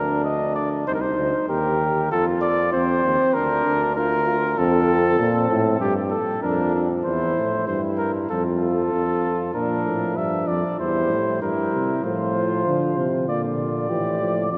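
A steady, straight 4/4 pulse at 97 BPM carries this joyful, elegant canzona for brass ensemble in Bb major, an imitative classical piece heard as a short cut from a longer work. Up front, a dark, punchy trumpet sings the melody with light vibrato and a smooth top, while a mellow flugelhorn traces a lower second line beneath it. A euphonium, also dark, up front and touched with light vibrato, anchors the bass from the opening. At 9.5 seconds a new section begins, and a mellow trombone joins as soft-attacked accompaniment with its own gentle vibrato, filling the middle of the texture until the close. The harmony moves gracefully through chords such as Cm, Gm and C/E before settling back on Bb. The ensemble sits in a wet cathedral reverb with a long four-second decay, and the sound is rounded off with a soft, dull top end.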